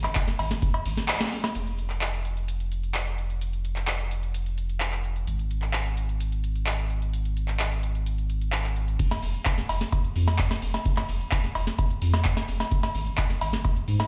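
Played through a big sound system in a bare room, this raw, driving acid house fragment at 129 BPM in straight 4/4 sits in large studio reverb with a light digital ambience. A booming analog drum machine runs throughout with metallic hats, a tonal snare, handclaps, cowbell, ride and crash, while a thick, saturated sub bass with a fast attack pumps against the sidechain beneath it. A deep electronic kick drum hits briefly from 0.2 to 0.7 seconds, a band accent lands at 1.1 seconds, and the kick returns for the drop from 9.0 seconds.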